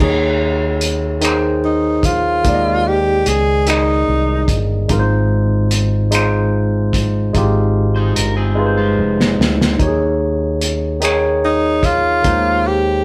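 A close-miked tenor saxophone carries the melody, its vibrato and scooped notes giving a warm, jazz-style solo voice that sits up front, entering at 1.6 s and returning near the close. This is a slow, intimate R&B groove in six-eight, cut from a longer piece, played by a band together in one room under moderate studio reverb. A bright, barky tine electric piano, lightly overdriven through a combo amp, holds down the accompaniment over a growly, punchy fretless bass. The cloth-damped drum kit sounds muffled and lo-fi, with a fat snare, tight kick, dark cymbals, hi-hat and finger snaps, and it plays a fill at 8.6 s. A twangy, slightly broken-up electric guitar adds a quieter picked second line from 8.0 s, while the harmony moves between a suspended seventh chord and a sixth chord.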